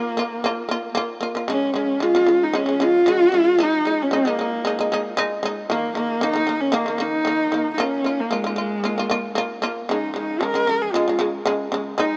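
Bathed in a huge ambient reverb, this vast, windswept Mongolian traditional fragment at 114 BPM features a husky, focused horsehead fiddle carrying the melody up front with vibrato and portamento, over buzzing, percussive plectrum-plucked shamisen arpeggios, both playing throughout the 12.2-second cut from a longer piece.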